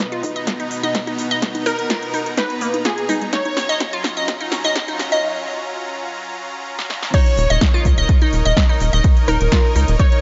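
Light reverb and a gently rolled-off top end give this short progressive house cut a polished, airy sheen, with a bittersweet, expansive mood. A punchy, up-front electronic kick anchors a deep house kit of smooth hats, a punchy snare and crash, joined early on by tape-warm congas, while a glassy, crystalline wavetable pluck spins arpeggios through chorus, phaser and digital delay. Above a lush supersaw pad holding slow-blooming chords, a detuned unison pluck carries the melody, joined in the background by an expressive, vibrato-rich violin section playing a second line, both echoing through delay and breathing with sidechain pumping. The build-up's drum fills give way to a brief break at 5.2 seconds before the drop lands at 7.1 seconds on a new chord. A tight, driving sequencer bass enters at 7.4 seconds, adding a mellow yet punchy low end as the melody returns.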